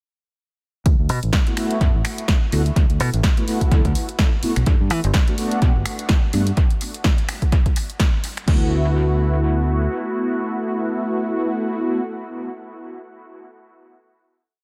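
A mellow, brassy synth chord riff with chorus, phaser and dub echo floats over a funky fingered electric bass and a punchy analog drum machine's four-on-the-floor kick, crash, snaps, hats and snare in this sunny, feel-good filtered disco house piece at 126 BPM in D major. It moves from D69 to Gmaj7 under a filter sweep before the groove gives way at 8.5 seconds to a final D69 chord. The bass lingers until 9.9 seconds and the synth brass sustains until 12.0 seconds in an echo-heavy mix.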